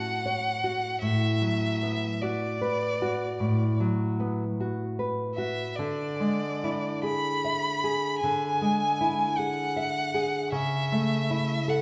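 A slow, rubato 12/8 pulse at 51 BPM carries this serene, lyrical romantic duo, cut from a longer piece and heard through the generous bloom of a recital hall with a 1.8-second reverb. A single bowed violin sings the melody between D5 and B5 with a focused, vibrato-rich tone and a smooth top, while a dark, full-bodied nylon-string guitar, fingerpicked in classical style from A2 to E5, supplies the accompaniment, both parts sitting up front for the full 11.8 seconds. The harmony drifts from F#m/A through Bm7/A and E7/D before settling on A/C# at 10.5 s.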